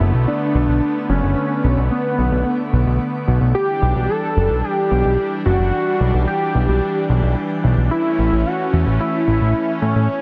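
A straight, driving 4/4 pulse carries this cinematic synthwave excerpt, cut from a longer piece, with its harmony moving from Bm7 to Em7 and then to A. Up front sits a fat analog bass, thick and sawtooth-edged with a detuned body, fast attack and decaying notes, a filter sweep and tube saturation adding grit beneath everything else. Over it, a bold unison lead carries the melody, its detuned sawtooth and triangle tones wave-folded and touched by ring modulation yet still mellow, with vibrato on sustained notes, subtle chorus, shimmer reverb and tape echo. Behind both, a smooth, vintage analog pad holds sustained chords with a soft attack and long release, warbling under lush chorus and its own shimmer reverb. The three parts share a lush hall ambience, and the dense, heavily limited modern master keeps the sound full and forceful.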